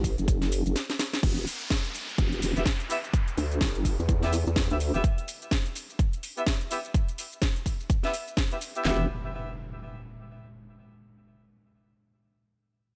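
A swung 126 BPM bass house groove in E minor opens on a drop, with a punchy kick, cracking snare, handclaps, metallic hi-hats, shaker and crash from two layered, tape-warm house drum kits, and a drum fill and break closing out the first 1.2 seconds. A nasal, resonant vowel-sweep wobble bass, saturated and sidechain-pumped, wobbles underneath until 5.0 seconds and returns briefly at 8.8 seconds, while a downlifter and impact mark the transitions. From 2.6 seconds a tight horn section with vibrato adds filtered, delayed pop-style stabs, giving this swaggering, aggressive excerpt of a longer track its brassy edge.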